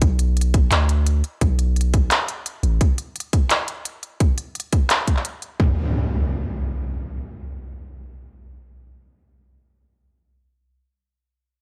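Tense and cinematic, this half-time drum and bass excerpt opens with a deep, mellow 808-style bass decaying under a hard-clipped electronic kick and an industrial kit of handclaps and crisp hi-hats, all up front with tape-warm studio reverb on the drums, before the beat drops out at 5.7 seconds and an electronic impact carries the dry, gritty, cassette-tinged space to the end.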